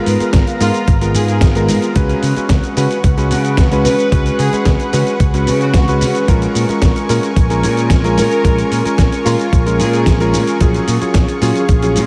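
A straight 4/4 groove at 111 BPM drives this groovy, sleek nu-disco excerpt, anchored by a gritty, thumpy electronic kick and a dusty, compressed soul-style kit of hi-hat, shaker and fat snare, both set in a small room. A punchy, amped fingered electric bass holds the low end, while a clear, vintage electric grand piano with clangy lows and long sustain sits up front, its accompaniment trailed by delay. A lush, thick unison pad of detuned sawtooth tones swells in slowly with chorus and sidechain pumping, sustaining chords through G#m69, C#7sus4, A#m7 and F#maj9/A#. Behind it all, a chamber violin section plays the melody with light vibrato, a biting yet smooth-topped edge and a diffuse ambient delay, falling away at 10.0 seconds. The whole mix is soaked in a huge, dreamy reverb with a long, lingering tail.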